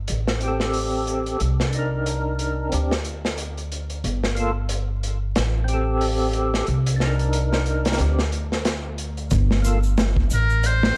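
Trip hop at 91 BPM in G minor, this brooding, cinematic passage is cut from a longer piece and moves with a swung sixteenth-note feel. An upright bass opens it up front, plucked and woody with a touch of tube saturation, while a crunchy breakbeat kit of kick, snare and hi-hat sits up front alongside it, gritty and saturated with a rolled-off top and a tight kick. From 0.4 seconds a percussive tonewheel organ fills in the harmony, fat and lightly overdriven through a slow rotary speaker, tremolo, tape echo and a layer of old sampler grit. The chords cycle through Am7, Cm9, D7sus4 and Gm9, and at 9.3 seconds an egg shaker slips in faintly in the background. At 10.3 seconds a trumpet with a metal mute steps forward for a brief jazz-style phrase, buzzy and thin with vibrato, over a bed of vinyl crackle and light studio reverb.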